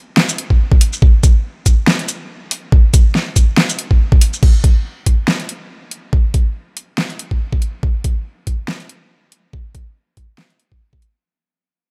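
A half-time dubstep groove at 141 BPM in 4/4, with a light 56% swing on the sixteenths, sets a dark, meditative mood in this short cut from a longer piece. The track opens on a drop, where a produced dubstep drum kit brings a huge snare, hi-hat, shaker and crash cymbal, joined a moment later by an electronic kick drum with a knocking, layered punch that sits up front. Both drum parts carry overdrive, giving the beat a gritty, saturated edge. From 4.4 seconds the music fades out, and the close, dry sound with little reverb keeps the percussion tight and direct until the end at 11.2 seconds.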